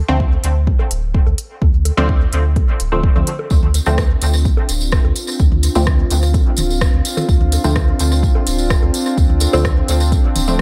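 Dub techno at 127 BPM in D minor, nocturnal and cavernous, resting on a single Dm7 chord in a digital ambience throughout this short cut from a longer piece. An up-front, deep electronic kick and a round, sine-like sub bass with tube saturation and sidechain pumping anchor the groove, while muted, detuned filter-plucked chord stabs drift through chorus, phaser and dub echo, and a deep house kit of smooth hi-hats and rim clicks plus tape-warm electronic bongos and toms in the background add echoing texture. A jingly tambourine joins at 3.5 seconds, and at 3.8 seconds a warbling, nostalgic lo-fi pad with a slow attack and long release fades in above the stabs.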